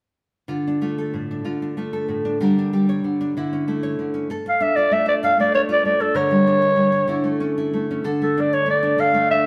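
A growling, raspy clarinet takes the jazz-style solo up front from 4.5 seconds, its gritty, vintage tone colored by scooped notes and a light vibrato. It rides over a full-bodied, fingerpicked nylon-string guitar that carries the classical-flavored accompaniment from 0.5 seconds, finger squeaks and all, cycling through Dm, Gm/D and A/D in D harmonic minor. This danceable yet bittersweet highlife excerpt moves in a straight 12/8 at 127 BPM, played live by the band in a wet stone room.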